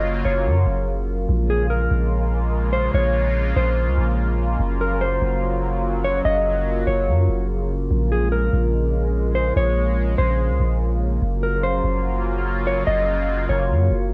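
A half-time pulse in 4/4 anchors this melancholic, hazy fragment of atmospheric cloud-rap hip hop. A deep, dark 808-style bass sits up front with a sine-like tone, a fast attack and long decaying notes. Behind it, a resonant pad built from detuned sawtooth and triangle layers with a sub octave holds sustained chords, its bright, evolving tone shaped by a slow filter swell, long release and chorus. A mellow, clean electric guitar carries the fingered melody with a dark tone, colored by a slapback echo. All three parts play together from 0.0 to 14.1 seconds over a gentle alternation of Gbmaj7 and Bbm7. The mix is dry, with a worn cassette-tape character whose warbly pitch drift adds a faded haze.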